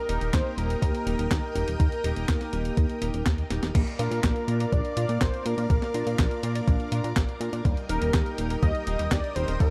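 A thumpy, tape-toned electronic kick sits up front in this playful, sunny slice of Italo disco at 123 BPM in Bb major, alongside a glossy chorused synth bass and a clean 12-bit drum machine of hi-hat, handclaps, medium-tuned snare and crash, which plays a fill at 3.5 seconds. Over them, a thick, dark detuned unison lead carries the melody with delay and shimmer reverb, while a full-bodied chorused polysynth adds retro stabs and a lush vintage string machine holds sustained chords in the background. A very quiet, soft round pluck joins with mellow arpeggios at 3.8 seconds as the chords move from Eb to Bb and back to Eb, and the mix stays dry apart from those shimmer and small-room touches.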